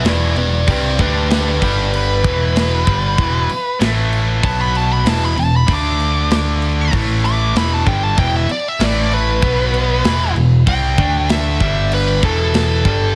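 Driving and menacing, this hard rock excerpt in E minor moves at 96 BPM in a straight 4/4, as a warm, bluesy overdriven lead guitar with distortion and slapback echo plays a solo from G4 to D6 over a bright, double-tracked high-gain guitar riff, a growly, punchy overdriven picked bass, and a tight metal drum kit with bright crash cymbals, a medium-tuned snare and a tight kick, all in a dry room through chords cycling from Em through D5, G5, A5 and B5.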